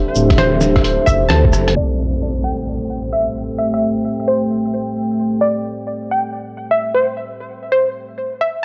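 A swung 131 BPM future garage groove in 4/4 opens this rainy, ghostly fragment in A dorian, built on a muffled, thumpy electronic kick and a lo-fi sampler-style kit of cabasa, hi-hat, rim click and medium-tuned snare, both compressed, pitched down and tape-softened, with the kit carrying a large-room tail. Beneath them a deep, rumbling detuned saw bass sits up front and pumps to the sidechain, and the drums and bass fall away after a band accent and a short fill, before 1.8 seconds. A dark, moody analog pad with a sub octave holds sustained chords from the start, moving from D9 to Am7, its slow attack and long release thickened by chorus and breathing with sidechain pumping. Over it, a glassy, crystalline wavetable pluck carries the melody, its evolving tone gaining sparkle from a noise layer, chorus and analog delay. An electronic impact lands at 1.8 seconds as a filter sweep begins with the second section, and a brief break arrives at 8.2 seconds. 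The whole has a dry, gritty hardware character, softened by a low-pass filter and a digital ambience.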